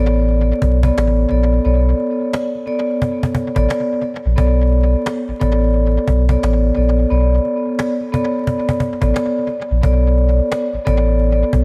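A swung sixteenth-note groove in 4/4 drives this reflective, dark boom-bap hip-hop excerpt, with a woody, close and dry cajon entering at 0.3 s under hard hands, faint snares and a touch of tape echo. Up front, a vibraphone played with soft mallets and motor off rings out mellow, metallic accompaniment colored by cassette tape, filtering and tape echo. A deep, full sub bass with octave sustains beneath on a single chord. The echo-heavy studio reverb and vinyl crackle give the whole mix a dusty haze.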